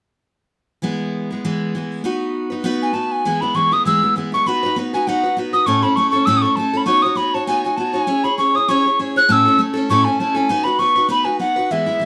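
A brisk 4/4 pulse at 199 BPM with a light swing on the eighth notes drives this bright, cheerful Celtic folk piece in E major, cut from a longer performance. A picked steel-string acoustic guitar opens at 0.8 s, its fresh-stringed, full-bodied dreadnought tone sitting up front as it lays down accompaniment through E and B. At 2.8 s a mellow, hollow tin whistle takes the melody, close-miked and pure, with a crisp chiff on each attack and vibrato coloring its tone. The harmony moves from E and B through A, Badd9, C#m, A and back to B, giving the tune a lilting arc. A moderate studio reverb adds a touch of space around both instruments, which play together until 12.1 s.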